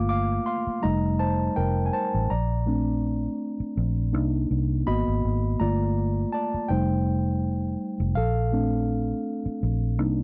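A lightly swung 16th-note feel at 82 BPM in 4/4 carries this silky, cinematic fragment of lush 1970s-style soul, where a mellow, reedy electric piano, heard clean through its built-in speakers, takes a solo across chords such as Gm9, F7, Bbmaj7, Cm7 and Abm9, while a dark, round, punchy foam-muted fingered electric bass sits up front beside it in a dry, close 1970s-style studio sound.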